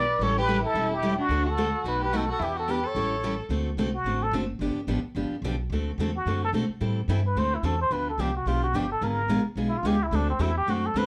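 Worn, warbling cassette tape with pitch drift and moderate studio ambience colour this playful, lively snippet of acoustic string swing in D mixolydian at 218 BPM, where a breathy plunger-muted trumpet carries the melody with wah-wah tone and scooped notes, taking a solo from 3.5 s, as a bowed violin adds a smooth, expressive second line with portamento until 3.4 s over bright, picked steel-string acoustic guitar accompaniment and a woody, thumpy pizzicato upright bass on gut strings.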